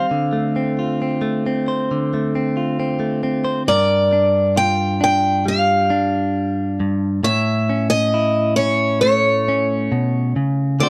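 A boxy, parlour-toned picked steel-string acoustic guitar carries the melody up front, joined from the opening moment by a clean, twangy, compressed electric guitar recorded direct that supplies the accompaniment beneath it. This heartbroken, melancholic acoustic folk-pop ballad fragment moves in a straight four, settling from Dm7 onto Gm7 at 3.7 seconds and reaching an A chord at 7.2 seconds. The sound is dry and close, like a 1970s studio recording with a touch of studio reverb.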